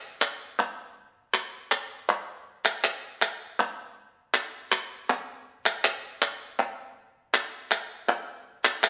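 Set in a wet stone room, this mournful, dramatic flamenco fragment cut from a longer piece features only crisp, acoustic palmas hand claps, heard close, dry and up front from 0.2 seconds to the end at 8.9 seconds.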